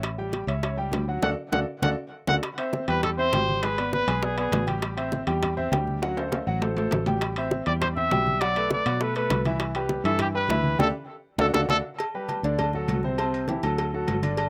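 Salsa with a sunny, joyful lift, this short excerpt sets a clear, intimate concert grand piano with slapback echo and audible action noise over a round, foam-muted electric bass, while tight high-tuned bongos and cowbell, ringing metal-shell timbales with agogo bells, and soft, low-tuned congas in the background drive the groove, and a punchy vintage trumpet with scooped notes takes the melody from 1.2 to 4.7 seconds and again from 7.7 to 11.8 seconds amid drum fills and band accents, all in a dry outdoor sound.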